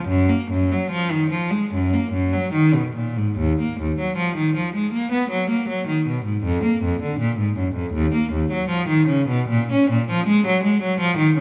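The recording places a single clear cello up front in a moderate concert hall, its notes trailing into a reverb that lingers for about 2.4 seconds. This is a baroque-style suite movement for unaccompanied cello, cut from a longer piece, with an introspective and grave mood. The tempo sits between 69 and 84 BPM in 4/4, but the playing is rubato, letting the pulse breathe freely. The bowed line is smooth and even, coloured by vibrato, and ranges from Eb2 up to Db4. It opens in F# major before turning to Eb minor at 3.4 seconds, and the lone cello carries on until 11.4 seconds.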